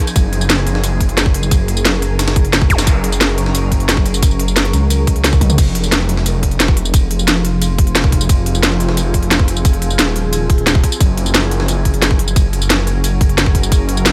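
Aggressive and futuristic, this excerpt of dark technical drum and bass drives at 177 BPM in a straight 4/4, centred on F phrygian and cut from a longer piece. A detuned saw bass sits up front, thick and dark with chorus, overdrive and sidechain pumping, moving through Gb, Fm and back to Gb beneath a tense, granular drone of sustained chords that swarms and evolves with its own built-in reverb and pumping. The main drum kit is tape-warm and layered, with a cracking snare, crisp hats, crash, tambourine and toms, while a tight electronic kick punches hardest of all. Behind them, a gritty, compressed breakbeat kit re-recorded in a small room adds a high-tuned snare and ride cymbal, its low end thinned by high-pass filtering. The passage is a drop that restarts at 5.6 seconds after a drum fill at 5.4, and a brief electronic zap flickers at 2.7 seconds, all in a dry, close mix.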